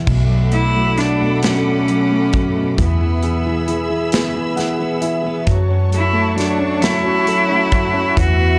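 A dusky, intimate mix with light reverb and small room ambience frames this romantic, swaying pop ballad in 6/8 at 44 BPM, moving from Bm7 to E to F#m. An up-front, smooth-topped solo cello sings the bowed melody with intense vibrato from 0.5 seconds, over a mellow concert grand piano with deep bass that breaks into a fill at 4.1 seconds. Around them sit a lush, distant bowed string section holding sustained chords, a picked steel-string acoustic guitar in the background with finger squeak, a round, foam-muted fingered electric bass, and a polished, airy drum kit with punchy kick, medium-tuned snare, hi-hat and crash.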